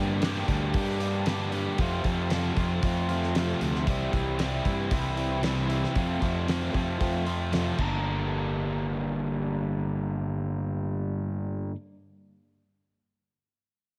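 This classic rock excerpt has a swaggering, brooding mood at 115 BPM in a straight 4/4, set in G dorian. A crunchy, overdriven electric guitar carries the riff, bright, picked and double-tracked, and sits up front. Beneath it, a fingered electric bass growls with fuzz and overdrive in its low register. A damped 70s acoustic kit with a fat snare, tight kick, hi-hat and crash has a dry, dark character with a rolled-off top; it plays from 0.2 seconds and stops at 7.9 seconds, leaving the guitar and bass to carry the closing part of the excerpt. The chords move from G minor through F and C, back to F and returning to G minor. A lush hall reverb gives the whole an arena-sized sound.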